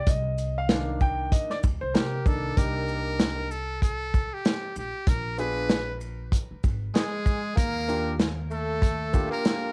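A muted trumpet carries the melody, its metal mute giving a buzzy, thin tone with a soft attack, colored by cassette tape and analog delay. This smoky, mellow jazz-hop excerpt sits at 96 BPM in 4/4 with a swung sixteenth-note feel, moving from Cm9 through Bb7b9 to Ebmaj9 in C dorian. A concert grand piano opens the clip and takes a solo over the first 2.6 seconds, intimate and up front with audible action noise, deep bass and long sustain, and the trumpet enters at 1.9 seconds. A vintage drum kit of kick, snare, hi-hat and shaker sits forward with a tight kick and rolled-off top, while a pizzicato upright bass adds a woody, thumpy low end. A breathy tenor saxophone joins at 6.9 seconds with subtone, vibrato and scooped notes, also touched by tape and delay. Light reverb and a home cassette recording lend the whole piece a lo-fi intimacy.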